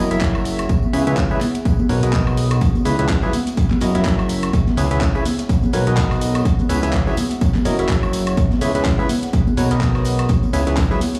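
Bittersweet and soulful, this piano house cut at 125 BPM in C# dorian swings its 16ths over a cycling F#7, C#m7 and Bmaj7 progression, led by a hollow, percussive organ stab riff with subtle chorus, dub echo and sidechain pumping, underpinned by a fat, detuned analog bass that pumps alongside a punchy, tape-warm electronic kick, while a garage kit of bright hats, handclaps, shaker and woodblock mixes with soft-handed tambourine and congas, a very quiet deep, moody pad hovers in the background, and a gritty, saturated breakbeat kit with a high-tuned snare slips in faintly at 2.6 seconds, all heard as if played on a big sound system in a bare room.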